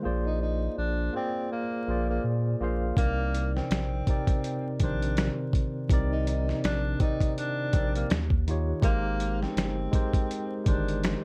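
Hazy and melancholic, this swung lo-fi hip hop fragment opens with a tine electric piano, its tone softened by cassette tape and a low-pass filter, over a deep, saturated sine sub bass. A breathy tenor saxophone with vibrato floats in from a distant, roomy space for an intimate jazz-style solo. At 3.0 seconds a dusty sampler-style drum kit joins up front with finger snaps, hi-hat, a thumpy kick and a medium-tuned snare, all carrying gritty 12-bit character, while light reverb and vinyl crackle wrap the dark production.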